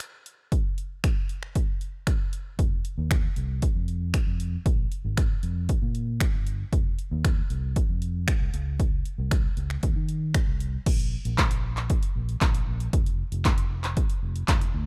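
A dry, rough home-demo sound frames this confident, bittersweet dance-pop excerpt in F minor at 116 BPM, where a punchy, tape-warm analog drum machine of kick, snare, handclaps, finger snaps, hi-hat and crash sits up front with a short room on the snare, clap and hats, a dark, round, foam-muted electric bass enters at 2.6 s with sidechain pumping, and the music moves into a new section at 10.9 s.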